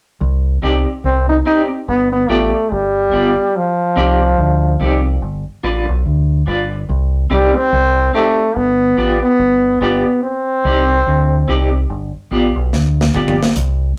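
A bright, punchy trombone carries the melody with a light vibrato and a smooth top in this laid-back, uplifting roots reggae excerpt, riding a swung sixteenth feel over alternating Cmadd9 and G7 chords. Beneath it, a dark, round fingered electric bass sits up front while a clean, twangy picked electric guitar adds tremolo-shimmered accompaniment. The drum kit, dry with a medium-tuned snare, arrives only at 12.7 s for a fill across hi-hat, snare and toms, all captured in a rough rehearsal-room sound with tube saturation and a wet studio reverb.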